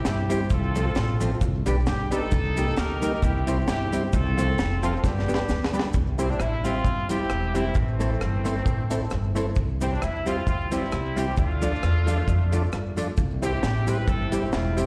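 Bouncy, upbeat ska with a lightly swung feel, cut from a longer live performance heard through a venue's PA in a reverberant recital hall, where a warm, vintage horn section carries the melody with slapback echo over a dry, dark reggae kit with a high-tuned snare and tight kick, an up-front, woody gut-string upright bass, a grainy cabasa in the background, a clean, compressed hollow-body jazz guitar, and a round tonewheel organ adding stabs through a slow rotary speaker, with a drum fill at 5.0 seconds leading into the second section.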